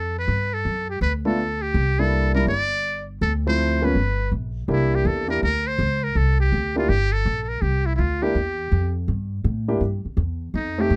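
Recorded up close and dry, with detailed microphones and very little room sound, this short swing-and-bop fragment for a small group feels lively and playful, with a swung eighth-note feel. A trumpet with a metal mute carries the melody as the up-front solo voice, its tone buzzy, thin and brilliant, shaped by a soft attack, light vibrato and scooped notes in a jazz style. Beneath it, a pizzicato upright bass with steel strings sits just as far forward, sounding woody and thumpy as it outlines the harmony beneath chords such as C9, Dm7 and Gm. A concert grand piano joins the accompaniment at 1.3 seconds, warm and intimate, with a natural tone, deep bass and audible action noise. The passage moves through two statements of the same section, the second beginning at 4.7 seconds, before the clip breaks off at 11.0 seconds.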